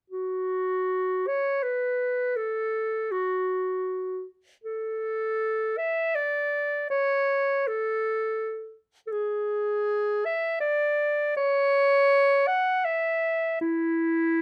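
A clear solo clarinet sits up front from 0.1 to 14.4 seconds, ranging from E4 to F#5 in this lonely, yearning classical fragment in F# minor, played freely and expressively with rubato around 80 BPM in 3/4 and set in a light reverb.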